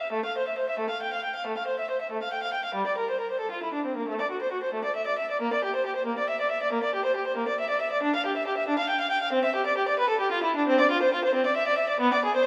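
A lone bowed violin with a dark, nasal, reedy gut-string tone in period style sings up front from the first moment, carrying a radiant, serene baroque-style suite movement in a rubato 12/8 at 92 BPM by the dotted quarter, moving between G3 and G5 across this 12.5-second excerpt while a wet concert hall reverb with a 2.5-second decay blooms around it.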